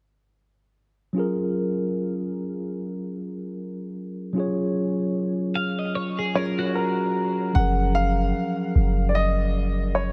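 Soaked in a long, huge ambient reverb, this short R&B excerpt feels romantic and dreamy, with a lightly swung pulse. A mellow tine electric piano opens at 1.1 seconds and carries the accompaniment throughout, its clean, speaker-tinged tone sitting up front. At 5.6 seconds a bright, twangy twelve-string electric guitar briefly adds picked arpeggios, shimmering with lush chorus and analog delay. Soon after, a concert grand piano with deep bass and short sustain takes the melody, also trailed by analog delay. When the second section arrives at 7.6 seconds, a boomy, sine-like 808-style bass drops in on a single low note, dark, decaying and up front in the mix.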